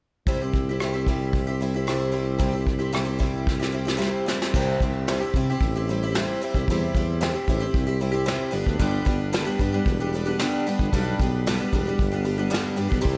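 Light reverb and a natural studio ambience give this short cut from a longer piece an intimate, small-room feel. It is folk rock with a heartland-rock lean in a straight four, and its mood is nostalgic and open-road. Up front, a picked twelve-string acoustic guitar carries the accompaniment with a bright, shimmering, octave-doubled concert tone, moving from C to G at 8.5 seconds. Beneath it, a mellow tuba holds the bass with a smooth top and light vibrato, played in a classical style. A soft brush drum kit, also up front, pairs a medium-tuned snare and punchy kick with hi-hat, rim click and crash cymbal, and a drum fill from 3.5 to 4.5 seconds leads into the next section.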